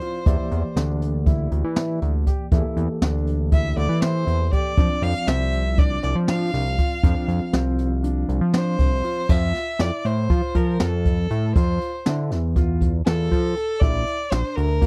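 A smooth, distant solo violin carries a vibrato-rich bowed melody over up-front brushed drums with dark cymbals, a high-tuned snare and a boomy kick, mellow grand piano arpeggios and a gritty, overdriven electric piano with fast tremolo through a combo amp in the background, while a fat, detuned analog bass with a filter sweep joins at 0.3 seconds in this driving, brooding progressive piece in 9/8, where the electric piano drops out at 9.3 seconds as the music moves into a new section, all in a dry, close 1970s-style studio sound.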